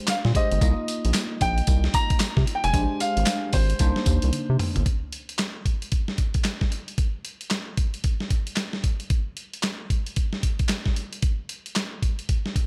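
In a digital ambience, this slick, punchy new jack swing excerpt sets a barky, bell-like tine electric piano through a phaser beneath a clear, polished baby grand piano melody, with a round, nasal analog bass up front and a gritty, compressed sampler-style drum kit of thumpy kick, snare, hi-hat, handclaps, tambourine and toms that swings its sixteenths, rolls through a drum fill at 4.3 seconds, and then plays alone from 4.9 seconds until 12.7 seconds.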